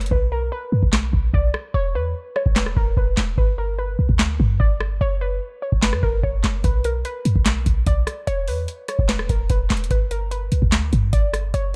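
A booming analog drum machine, a clean 808-style bass and a warbly, dusty pluck begin together in this brooding, melancholic trap piece, moving in a half-time feel over a Bm, E5, G and F#5 progression. The drums pair a deep kick and rim clicks with a crisp snare and handclaps set in a short room, their tape-warm sound up front, while metallic hi-hats in the same short room hold off until 6.6 seconds. The sine-based bass is boomy and mellow, also up front, and the quieter lo-fi pluck carries a detuned, vintage melody with a noise layer, filter sweep, chorus and phaser, all set in a digital ambience.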